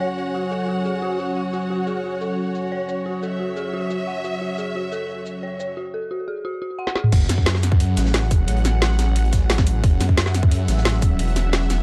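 A sweeping, resonant pad, an eerie detuned synth bell arpeggio under a filter sweep and a clear bowed string texture open this mechanical, futuristic slice of dark technical drum and bass in F# minor at 177 BPM, joined at 0.2 seconds by an up-front electronic kit with a woody snare and metallic hats, until a drum fill at 6.9 seconds drops at 7.1 seconds into a snarling, growling distorted saw bass, a tight electronic kick and a very quiet, gritty breakbeat kit, all in a dry, dark production.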